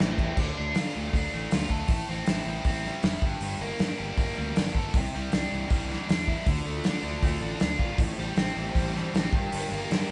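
A straight 4/4 pulse from a cloth-damped, thuddy drum kit with dark cymbals and a tight kick drives this restless, bittersweet indie rock passage, cut from a longer piece. Up front, a biting, double-tracked overdriven guitar riff sits over growly, punchy fuzz bass as the chords move through Dm, Am7, Gm and Cadd9, all captured as a band playing live in one room with moderate reverb. A vintage, warbling string machine voicing violas, softened by ensemble chorus, holds sustained chords in the background, heard briefly at the very start and returning at 6.5 seconds.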